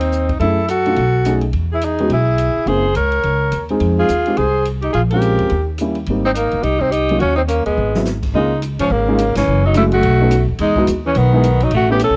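A breathy, whispered tenor saxophone carries the melody over a raspy, growling alto second line, with woody, thumpy upright bass and an open jazz kit with dark cymbals and a boomy kick, all swinging briskly at 212 BPM in Ab major in this sophisticated, playful small-group bop fragment. A grand piano with audible action noise fills in the harmony through rich, shifting chords, while a drum fill at 7.8 seconds leads into the next section and a band accent lands at 9.3 seconds. The sound is dry and close, like a 1970s studio session in a small room, with tenor and bass up front.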